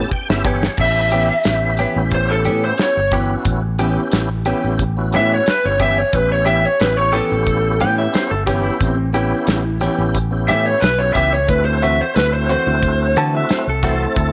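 A dark, overdriven, lo-fi lead guitar through a small cranked amp carries the melody in this laid-back, rollicking straight-eighth soul blues excerpt at 90 BPM in A mixolydian, backed by a round, up-front fingered electric bass, a dry, airy damped 70s drum kit with dusky cymbals and a tight kick that opens with a fill alongside the tonewheel organ, a full, lightly overdriven organ with slow rotary speaker and chorus vibrato, bright, compressed stabs from a direct-recorded clean electric guitar, and a clean lap steel guitar that joins at 7.8 seconds with slide and volume swells as the A9 groove moves to D9 at 11.5 seconds, all in a small room with light reverb.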